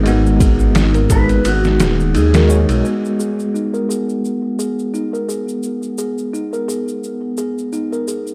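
A dry, gritty recording with a digital ambience opens this short, cinematic trip hop piece in G# minor at 86 BPM, moving in 4/4 with a light 16th-note swing over a G#m7 chord. For the first 2.8 seconds, a dark, detuned saw bass rumbles up front with transformer saturation, joined by a pitched-down, overdriven sampler-style drum kit with a thumpy kick, medium-tuned snare and ride cymbal. A bell-like tine electric piano carries the accompaniment throughout, bright and clean, with tremolo and tape echo. A warbling, nostalgic pad holds sustained chords in the background with chorus and reverb, while a delicate, tinkling music box plays filtered arpeggios from 0.4 seconds. A mellow electric guitar adds a brief, chorus-drenched melody with tape echo, and a faint tube shaker with group handclap keeps a small-room pulse to the end, leaving a smoky mood once the bass and drums drop away.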